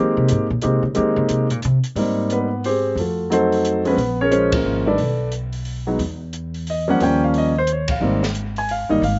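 A swung waltz feel carries this relaxed jazz piano trio fragment, cut from a longer piece, where an intimate, up-front concert grand with audible action noise, deep bass and long sustain leads the melody over woody pizzicato upright bass on steel strings, while a softer acoustic drum kit with dark cymbals, a high-tuned snare and a boomy kick enters at 0.3 seconds and joins the band accents at 4.5 and 7.8 seconds, all in a dry, close sound with a dull top end.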